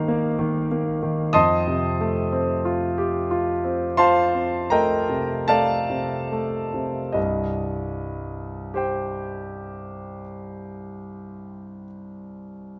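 The rhythm moves freely in 4/4 with rubato, drifting between 34 and 48 BPM, and the tempo slows down through the opening 7.2 seconds. This is a short cut from a longer impressionist classical piece for solo piano, and its mood is wistful and nocturnal. The lone concert grand sounds clear and natural, sitting up front with a deep bass and a span from C2 to F6. The harmony opens on Abmaj9, shifts to F9, and then turns to C minor at 7.2 seconds as a new section begins and carries on to 12.8 seconds. Close, detailed microphones catch the instrument, while a moderate concert hall reverb lets each chord hang in the air.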